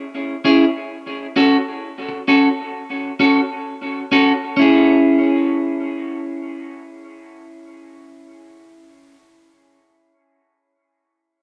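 Steeped in a moderate spring reverb with a 2.0-second decay, this echo-heavy reggae recording is cut from a longer piece. It moves at 65 BPM in 4/4, with a 59% swing on the sixteenths, and its mood in C# minor is meditative and heavy. A clean, picked electric guitar sits up front as the accompaniment, entering at 0.4 seconds, its warm tone trailed by dub echo. The harmony shifts from C# minor to F# minor early on, then settles back on C# minor as a second section opens at 4.6 seconds.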